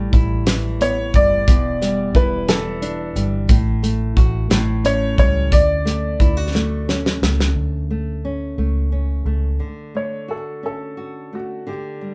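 A fingerpicked nylon-string guitar and a round, foam-muted electric bass open this swaying, heartfelt pop ballad in D major, moving in a slow 6/8 at 59 BPM with a straight feel, joined at once by a dry, damped 70s drum kit with a fat snare and tight kick sitting up front. At 0.8 seconds a concert grand piano takes the melody, intimate and natural with audible action noise, carrying the tune over chords that pass from Em7 through F#m/A and A7 to Dmaj7. A drum fill closes the opening section, and the drums stop at 7.6 seconds as the harmony settles on D5, with only the classical-toned guitar and the dark, punchy bass continuing. The bass drops out at 9.6 seconds, and the piano returns at 10.0 seconds over a Dmaj7 with the guitar to finish this excerpt. The band sounds as if playing live together in a small room with a moderate, short reverb.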